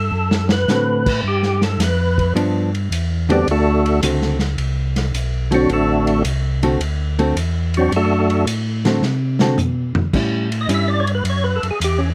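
A swung 4/4 groove drives this greasy soul jazz organ trio clip, cut from a longer piece and moving through D7, G7 and A7 changes. The lead tonewheel organ carries the melody as a solo throughout, its fat, lightly overdriven tone marked by third-harmonic percussion, key click, chorus vibrato and a slow rotary speaker. A second, mellow tonewheel organ supplies a round, dark bass line, also gently overdriven and turning through its own slow rotary and chorus vibrato, with both organs sitting up front. A vintage acoustic kit enters at 0.3 seconds with a muffled, lo-fi small-room sound, dark cymbals and a punchy kick, and adds a fill at 9.0 seconds. From 0.7 seconds a clean, picked hollow-body electric guitar comps in a dark, compressed voice close to the listener, and light reverb ties the trio together.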